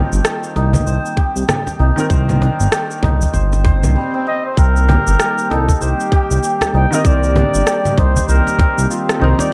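A swung, hypnotic 97 BPM groove in C dorian sets this organic downtempo piece in motion, with a tight, tape-warm electronic kick up front, electronic shaker, rim click and congas re-recorded in a large room, and a woody cajon played with soft hands in the background, all under a smooth, sidechain-pumped synth bass on Cm7. A shimmering, ringing santur spins arpeggios through digital delay, while a mellow felt-muted upright piano with audible action noise and a warbling, detuned vintage analog pad sit quietly beneath. As a short electronic swell rises and a break opens at 4.0 seconds, a dark, veiled trumpet with a bucket mute takes the solo melody at 4.3 seconds, distant and roomy, in a light, small-room ambience.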